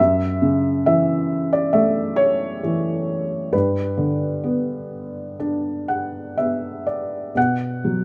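Warm and peaceful, this brief classical excerpt from a longer piece is a lyrical solo for felt-muted upright piano, moving at a slow 60-68 BPM in 4/4 with a flexible, rubato feel. Set in G lydian and tuned to A4 = 441 Hz, the piano spans F#2 to F#5 across its 8-second length. Its tone is soft, muted, mellow and intimate, and it sits up front in the mix. The harmony drifts from F#m7 to G, and a piano fill arrives at 5.4 s before settling on a B5 chord at 7.4 s. Close, detailed microphones capture every nuance of the instrument, while light reverb adds a touch of space around it.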